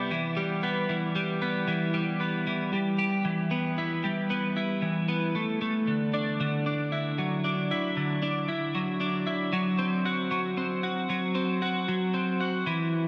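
A clean, picked twelve-string electric guitar plays alone in E minor at 115 BPM in 3/4, its compressed, up-front tone shimmering through analog chorus and delay, moving between Em and Dadd9 over a build-up in this melancholic, cathartic rock fragment, all bathed in a cathedral reverb whose dreamy, dark haze caps the sound below 11.0 kHz.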